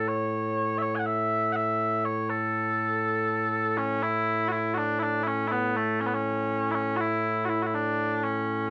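Mellow, sweet small bagpipes play solo and up front with a continuous vibrato-tinged tone and a slapback echo, carrying a stirring, ceremonial Scottish traditional tune in 6/8 whose opening strain repeats at 3.8 seconds, heard in a short cut from a longer piece in a dry, close 1970s-style studio sound with light reverb.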